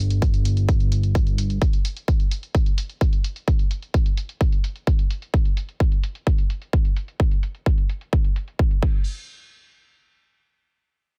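A fat, detuned sawtooth analog bass with sidechain pumping opens this euphoric, emotional festival progressive house excerpt at 129 BPM and sounds only until 1.6 s, while a punchy, up-front electronic kick drum and a layered big-room dance kit, its crash cymbal and hi-hats low-pass filtered and sitting far back in the mix, carry on to 8.9 s inside a digital ambience.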